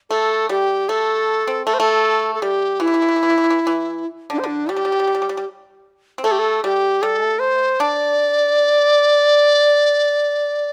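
A large dizi and a pipa begin together at 0.1 s in this graceful, festive Chinese chamber piece, cut from a longer work and set in the D shang mode at a loose, rubato 78 BPM in 4/4. The bamboo dizi carries the melody up front with a reedy, buzzing-membrane tone, while the pipa, plucked with fingerpicks, adds a dry, percussive second line lower down. Close, detailed microphones and a light reverb keep the sound intimate through the end at 10.7 s.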